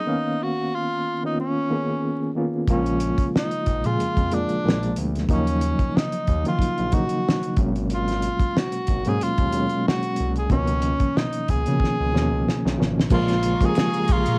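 A breathy, whispered tenor saxophone carries the melody over a reedy electric piano with fast tremolo in this introspective, soulful neo-soul and R&B fragment cut from a longer piece, joined at 2.7 seconds by a smooth, detuned synth bass and a cloth-damped, thuddy drum kit with a fat snare that plays a fill from 11.8 seconds, before bowed chamber strings in the background and very quiet maracas and finger snaps arrive at 13.1 seconds, with the saxophone, piano, drums and strings taking on a cassette-tape tint amid the light reverb and vinyl crackle of a home recording.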